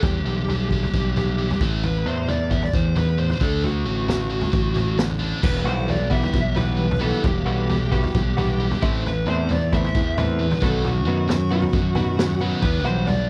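A dry, close 1970s-style studio sound frames this bittersweet, moody indie rock clip in E minor at 133 BPM, where a dark, compressed fuzz lead guitar carries the melody over a bright, scooped high-gain riff guitar, an up-front overdriven fingered bass and a gritty small-room garage kit with a high-tuned snare and boomy kick, joined at 5.7 seconds by a warm, clean twelve-string electric guitar riff with analog chorus as the chords move from Em through A5 and D to Emadd9, Am and B.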